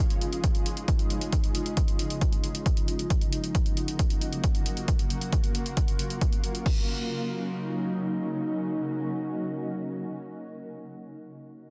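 A dense, heavily limited modern master sits in a moderate recital-hall reverb, framing this emotional, soaring passage of uplifting trance at 135 BPM in Eb minor, cut from a longer piece. An ethereal, detuned pad with an octave-up shimmer holds slow-attack chords through Dbadd9 and Gb, pumping under sidechain with chorus and its own reverb. A dry, punchy electronic kick sits up front beside the analog drum machine's pumping hi-hats and crash, until both drop out at 6.7 s and leave the dark pad alone on Ebm7 until 10.1 s.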